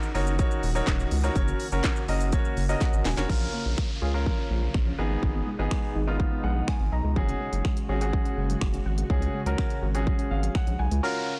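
A straight house pulse drives this upbeat, euphoric dance-pop fragment, cut from a longer piece, with a punchy kick, cracking snare, crisp hats, finger snaps, shaker and handclaps sitting up front, capped by a drum fill around 2.8 seconds and a crash. A thick, saturated sub bass holds the low end alongside the drums, while a polished baby grand piano carries the accompaniment, pumping against the kick and dropping in short fills. Deep in the background, a silky, warbling vintage string machine sustains mellow chords through an ensemble chorus, and a barely audible group of human handclaps slips in near the start. From 3.3 seconds a soft, round, dark pluck adds very quiet arpeggios as an electronic downlifter sweeps beneath, and the harmony moves through D#m7, F#, A#m, G#m, F#sus2 and C#sus4. The whole recording has a blown-out, overdriven character set in a digital ambience.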